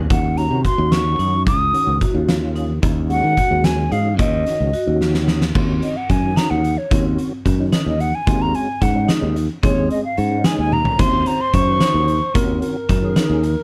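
Brooding and driving, this short cut of progressive instrumental band music in 5/8 sets a hollow, close-miked concert flute up front over a growly, punchy fingered bass, a gritty oversized low-tuned drum kit with a boomy kick and dark cymbals, a tonewheel organ with key click and slow rotary swirl, and ringing hard-mallet vibraphone arpeggios in the background, with a flute solo from 5.6 seconds and a dark, scooped alto saxophone line joining at 11.0 seconds.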